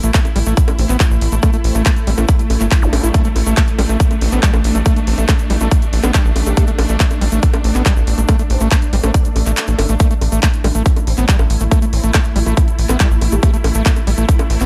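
Intense and psychedelic, this psychedelic trance cut is driven by a punchy, overdriven electronic kick and a tight, sawtooth sequencer bass up front, with an overdriven big-room kit of bongos, handclaps and hi-hat, a grainy egg shaker and a squelchy, gritty acid bass riff with tape echo in the background, while a swarming, detuned drone holds sustained chords, a very quiet formant-sweep wobble bass adds a second line from 0.8 seconds, faint electronic zaps and swells appear, and the kick drops out briefly at 9.6 seconds.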